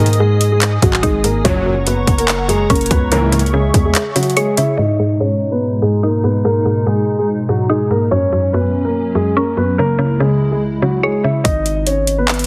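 A dark, mellow concert grand piano carries the melody up front through this menacing, hard-hitting half-time trap excerpt in G# minor at 144 BPM, backed by a woody, round mallet-like synth pluck and a hollow, flute-like soft pad that warbles under ensemble chorus. An edgy sync-sweep polysynth with a nasal sawtooth bite stabs only through the opening 3.4 seconds. A punchy, heavy 808-style bass and a trap kit of hard-clipped kick, metallic hi-hats and handclaps drop out early and return at 11.4 seconds, while a filter sweep spans the middle stretch under light reverb and a heavily compressed, radio-like sound, as the chords move from G#5 through F# and C#m to G#m.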